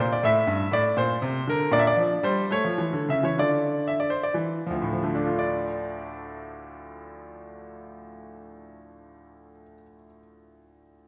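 A bright grand piano carries this short solo passage, its tone brilliant and natural, placed up front in the sound. Cut from a longer piece, it is a baroque-style suite movement in D minor and 6/8, moving freely in rubato at roughly 56 to 83 BPM in dotted quarters, with a flowing, introspective mood. The piano ranges from D2 up to E5, and the harmony passes from A5 through Bbadd9 and Bb to A before settling on D minor at 3.4 seconds. The pace slows from 1.0 to 5.4 seconds, closing the opening section before a second section runs from 5.4 to 9.6 seconds, and the piano sounds until the passage ends at 11.1 seconds. A wet concert hall reverb with a 1.8-second decay surrounds the instrument, and the top end is rolled off, with nothing above 7.9 kHz.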